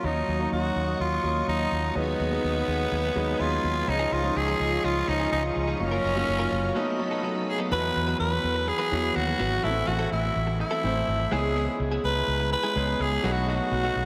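A gritty, growling tenor saxophone leads up front with a raspy tone, light vibrato and analog delay, carrying the melody through this nostalgic, romantic pop excerpt at 125 BPM in a straight 4/4. Beneath it, a long-sustaining baby grand piano and an amped fretless electric bass hold the accompaniment, while a vintage, warbling organ-string ensemble with ensemble chorus sits in the background until 7.7 s, when the music settles into E major. A very quiet, compressed clean electric guitar, recorded direct, picks a riff from 3.9 s, all bathed in a dreamy cathedral reverb.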